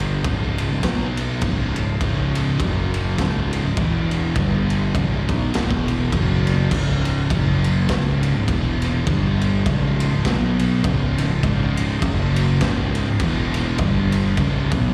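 Heard as a live gig through the venue's PA, with small room ambience and recital hall reverb, this excerpt of sludgy, heavy stoner and doom metal sits in C# minor at 102 BPM with a swung 4/4 feel. Two picked, distorted fuzz guitars, one dark and one thick and warm, grind out a riff in the background around C#5, F#5, E5 and G5 power chords, while a round, overdriven fuzz bass plays low beneath them. Up front, a raw, acoustic garage drum kit with a boomy kick, a medium-tuned snare and a gritty, rolled-off top drives the riff with crash and ride cymbals.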